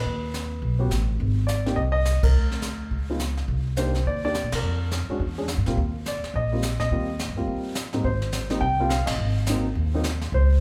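A moderate recital-hall reverb gives this short cut from a longer jazz piano trio performance the airy glow of a church or concert hall. The tune swings briskly at 210 BPM in 4/4, relaxed and easy-going in Eb major, tuned slightly low to A4 = 436 Hz. Up front, the grand piano carries the melody with a mellow tone and short sustain, ranging from Ab2 to G5. Beside it, the pizzicato upright bass has a woody steel-string voice, while the brushed kit adds dark cymbals, a high-tuned snare and a boomy kick in a polished studio-room sound. The whole trio lands accents at 2.2 and 4.5 seconds, and the harmony passes through chords such as Cm9, E and Eb6 before turning to Abmaj7 at 8.0 seconds and Ab7 at 9.2 seconds.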